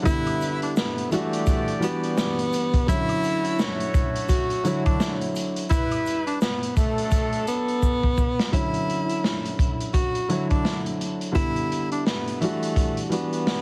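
Confident and soulful, this boom-bap hip-hop excerpt rides an 85 BPM swung groove in D major. A crunchy, saturated breakbeat kit with a tight kick sits up front beside a dark, mellow grand piano moving through jazzy chords such as Em9 and Dmaj9. A breathy tenor saxophone leads with vibrato, subtone and scooped notes under tape echo, while a clear trumpet section adds stabs and a tube shaker and woodblock tick quietly in the background until a drum fill running from 7.8 seconds carries the music into the second section. The whole mix carries vinyl crackle and a heavily compressed, radio-like sound.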